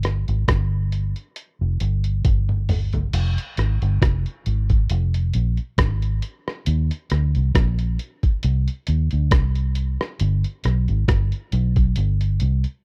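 A muted, round fingered electric bass and a muffled, pitched-down sampler-style drum kit open together on this bittersweet, smooth lovers rock reggae fragment at 68 BPM in 4/4, its sixteenths lightly swung. The dark, punchy bass sits up front, while the compressed kit, with its thumpy kick, hi-hat, rim click, toms and crash, has a tape-warm, small-room character. A drum fill from 2.2 to 3.1 seconds leads into the second section, and the dry, close 1970s-style studio sound keeps both parts intimate.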